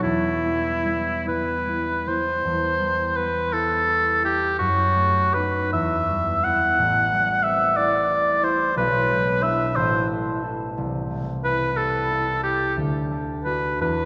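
An oboe with light vibrato and a smooth top sings a lyrical solo melody, up front, over a ringing, thumb-plucked concert harp accompaniment, both sounding from the first moment in this romantic classical duo. The music moves in a flexible, rubato 6/8 with a warm, lyrical mood, its harmony drifting from Em through Am7 and E7/B before settling on D near 12.8 seconds. A wet church reverb with a long tail surrounds the pair, and the passage is cut from a longer piece.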